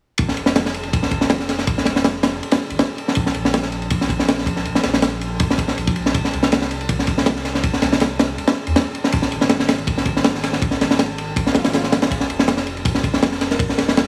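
This drum and bass excerpt in a jungle vein runs at 161 BPM in F minor, cut from a longer piece, with a frenetic yet nostalgic mood. A crunchy breakbeat kit sits up front throughout, its punchy kick, high-tuned snare and dark ride cymbal sounding gritty and saturated with a rolled-off top and small-room character. Beneath it, a soft dub sub bass holds a deep, round tone between F1 and Eb2, staying in the background for the whole passage. A very quiet electronic swell appears briefly at 11.4 seconds, and near the close, at 13.5 seconds, a buzzing kalimba plucks a single woody Bb4 trailed by dub echo. The mix carries light studio reverb and heavy multiband compression, giving it a squeezed, radio-like sound.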